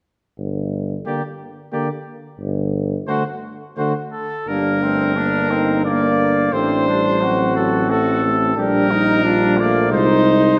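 Heroic and solemn, this classical brass quintet passage moves at 88 BPM in 3/4 with a rubato feel, set in G minor and cut from a longer piece. A warm, up-front tuba opens the bass line alone at 0.4 seconds, its soft attack and light vibrato anchoring the low register, before the rest of the ensemble enters at 1.1 seconds. A bright trumpet carries the melody up front, while a second, clear-toned trumpet traces a supporting line beneath it. The French horn, with its own light vibrato, and a warm, smooth-topped trombone fill out the accompaniment, with every part but the trombone sounding distant and roomy in a wet scoring-stage reverb. The harmony moves from G minor through a D seventh over A toward an A-flat chord over C near the close, lending the passage a grave, ceremonial weight.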